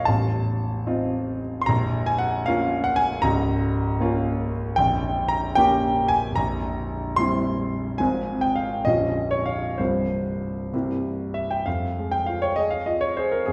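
Swaying in a rubato 6/8 at roughly 61-79 BPM counted in dotted quarters, this short passage from a longer romantic character piece for solo piano feels passionate and stormy. A clear concert grand, natural in tone with a deep bass and short sustain, sits up front and plays alone throughout, ranging from A0 to C6. The harmony opens on F7 over A and moves through B-flat minor, with the key of F minor taking hold from 4.8 s as a diminished chord over B-flat arrives. Later, a Csus4 resolves to C before the music arrives on F minor at 11.7 s, where a new section begins. A wet recital hall reverb places the listener further back in the room, lending the piano a spacious, resonant halo.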